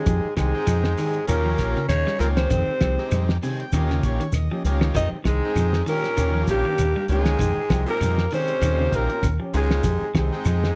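A breathy, raspy alto saxophone carries the melody up front with vibrato and a slapback echo, while a clear, distant trumpet and a gritty, punchy baritone saxophone with scooped notes play second lines behind it in this intense, defiant afrobeat excerpt cut from a longer piece. A fingered electric bass sits prominently over a muffled, cloth-damped drum kit with a fat snare and tight kick, joined by a grainy shekere and woody claves in the background. A dark guitar at the edge of break-up plays stabs through lush chorus, a clean picked guitar adds arpeggios, and a buzzy, overdriven combo organ accompanies and plays a fill from 3.1 to 4.9 seconds, all over alternating Fm9 and Eb7 chords in a dry, close 1970s-style studio sound.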